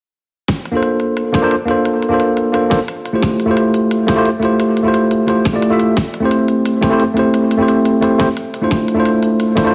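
Liquid drum and bass in a melancholic, lush mood, cut from a longer piece, where a tight, up-front electronic kick and crisp, filtered hi-hats run from 0.5 seconds in a plate-reverb space. A worn, slightly out-of-tune tine electric piano enters at 0.7 seconds as the up-front accompaniment, lightly overdriven and filtered, sounding as if through built-in speakers with tape echo trailing its chords. The harmony moves from a rootless Gm11 to Am7 and settles on Dm9 near the end.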